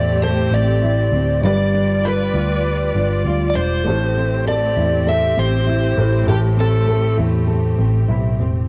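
An overdriven slide guitar carries a dark, up-front melody over a woody, thumb-plucked nylon-string guitar, a felt-muted upright piano with audible action noise, lush bowed strings and a round, punchy muted electric bass in this tender, reflective acoustic pop excerpt in A minor at 99 BPM with a light 16th-note swing, moving from Am7 to G7 and back to Am7, the slide melody dropping out at 7.2 seconds while the cassette home recording leaves the sound with a dulled top end.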